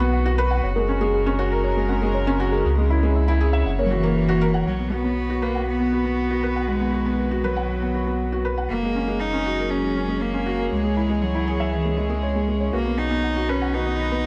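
A dark, roomy studio sound with moderate echo-chamber reverb frames this luminous, tender excerpt of piano and strings electronica, moving at 119 BPM in a straight 4/4 in B major. Up front, a felt-muted upright piano plays a mellow, intimate riff through tape echo, while a deep, round sine sub bass holds the low end with a fast attack and sustained tone. Behind them, a studio string section sustains chords with light vibrato and a reedy, gut-string, period-style tone. A soft, gentle pluck, full-bodied and set in the background with chorus and tape echo, spins arpeggios over the opening seconds and returns at 12.7 s. From 3.8 s a single bowed cello carries the melody, earthy with a biting edge and a smooth top, over chords that circle B, F#add9 and C#m.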